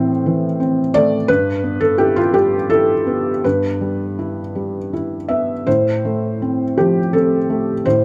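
Neoclassical minimalist piano in 3/4 at 82 BPM, this intimate, melancholic fragment from a longer piece unfolds with uneven beats and a rubato feel. A felt-muted upright piano plays alone from 0.0 to 8.0 seconds, spanning G2 to E5 with a soft, mellow tone, audible action noise and a close, up-front presence, moving from Am to Em/G at 1.3 seconds and F/A at 5.7 seconds. Light reverb gives the natural sound a gentle sense of space.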